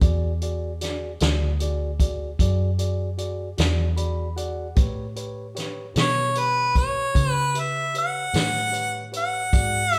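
A slow, laid-back 12/8 blues at 50 BPM with a straight feel rides on a vintage acoustic drum kit with a fat snare, tight kick and hi-hat, under a dark, round, foam-muted fingered electric bass. A clean tine electric piano comps over the E7 chord and slips in a fill at 3.6 seconds before the harmony moves to A7 at 4.8 seconds. At 6.0 seconds a soulful, up-front solo harmonica enters in a jazz style, punchy and smooth-topped, with scooped notes, tongue slaps and light vibrato, all set in a moderate stone room that sounds like a band playing live together in this brief cut from a longer piece.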